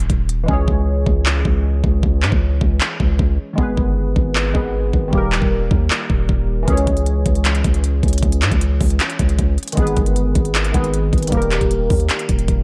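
A knocking, overdriven trap drum kit with handclaps sits up front at a half-time 155 BPM, its crisp hi-hats muted from 0.5 to 6.7 seconds, while a deep, long sustained 808-style bass rolls from the start and glassy, wave-folded digital keys with chorus and a low-pass filter sweep enter at 0.4 seconds to trace an eerie, menacing C#m, G#m, D# progression in light digital reverb.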